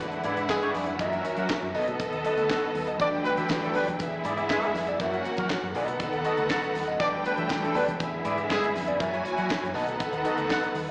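Lush, vibrato-rich violins carry a second line over sustained chords from a clear, focused string section and a dark, round, foam-muted fingered bass in this sultry, danceable disco excerpt, which cycles through E7, F#7, B7 and Em11. A dark, picked clean electric guitar with wah, spring reverb and slapback echo joins a tight funk kit with a high-tuned snare, handclaps and hi-hat, while very quiet damped congas and a jingly tambourine sit underneath. Smooth-topped horn stabs cut in from 0.5 to 8.7 seconds, and the whole band sounds like a live gig heard through the venue's PA, with recital hall reverb and a small speaker tone.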